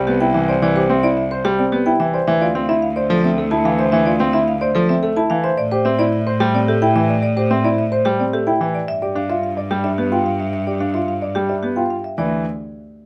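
Urgent yet meditative, this short cut from a longer piece of minimalist classical pattern music moves at 109 BPM in a straight 3/4, centred on D dorian. A woody marimba struck with medium hard mallets carries the melody while a dark, worn grand piano spins arpeggios and a clear, up-front baby grand piano, its action noise audible, supplies the accompaniment, all over a focused, bowed cello bass with vibrato. Light reverb frames the intimate sound as the chords pass from Cmaj7 through Dm7, Am7 and G7(no3) before settling on Dsus2 at 12.2 seconds.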